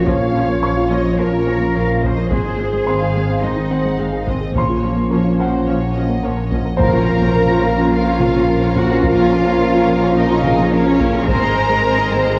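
This cinematic hybrid orchestral and electronic film score excerpt in Bb minor moves at 107 BPM in a straight 4/4, vast and futuristic, built on bowed strings with lush vibrato: a rich violin second line, warm cellos and an expressive viola section with portamento over a distant double bass section and a deep, full sub bass with octave, while a dark, roomy French horn section and a hollow, flute-like pad with chorus hold sustained chords. A very quiet, round pluck plays arpeggios, taiko drums struck with heavy sticks sit in the background, and a boxy grand piano adds texture through digital delay from 0.6 s. At 6.8 s a warm violin melody and a very quiet trombone section enter alongside a huge, bright impact, all set in a scoring stage reverb with a worn, warbling cassette-tape drift.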